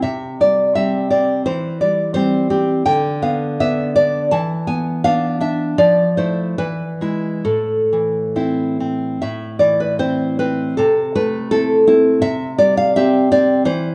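Passionate and wistful, this romantic piece for solo classical guitar unfolds in A minor with a free, rubato feel, drifting between 66 and 88 BPM in 2/4. A single nylon-string guitar carries everything, fingerpicked up front with a full-bodied, deep classical tone that spans from A2 to A5. The harmony moves through colors such as C/E, Dm69, Fmaj7 and E before settling on A minor at 7.5 seconds, then turns toward Am/C and C5 as the opening phrase returns at 9.2 seconds. A generous studio reverb surrounds the instrument, giving it the sense of a large room. This brief passage, cut from a longer piece, ends at 13.9 seconds.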